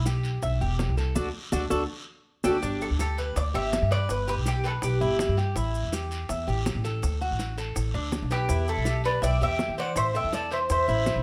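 A straight 4/4 groove at 164 BPM drives this relaxed, danceable Cuban son and guajira in G major, cut from a longer piece. Round, low-tuned bongos played with soft hands sit close and dry, joined by a raspy, band-limited guiro and grainy, compressed maracas tucked into the background. An up-front upright bass plucks woody, thumpy gut strings, while a tres with paired, octave-doubled metallic strings picks arpeggios over chords moving through Em, D, G and Am, with a band accent at 1.2 seconds. A second, mellower tres, bathed in plate reverb, carries the melody from 2.4 seconds and returns alongside a breathy, bright jazz flute that adds a reedy second line with vibrato and a crisp, chiffy attack from 8.3 seconds. A light reverb gives the whole ensemble a touch of air.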